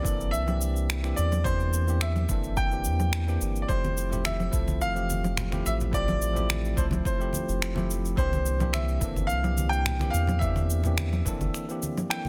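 Warm and smooth, this sunset chillout excerpt sets a brilliant baby grand piano melody with long sustain and digital delay over bell-like tine electric piano chords moving from C9 to Fmaj9 and back, anchored by a round, deep analog bass with a filter sweep, a punchy layered electronic kick, and an electronic shaker, conga and finger-snap kit with soft clipping on the snare, while hard-handed acoustic congas join in the background at 3.8 seconds and the kick and bass drop away for a brief break at 11.5 seconds in a dense, heavily limited modern mix.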